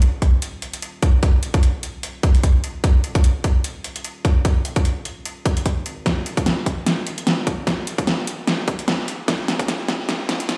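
A very quiet, thick, saturated sine sub bass and an overdriven pop drum kit with a fat snare and metallic hats open this bittersweet, lush future bass build-up in Eb minor at 149 BPM in a swung half-time feel, joined at 0.2 seconds by an up-front, hard-clipped, tape-warm electronic kick, all under a filter sweep running throughout and a large, bare-room studio reverb, before a drum fill arrives at 6.1 seconds and carries on to the end of the excerpt.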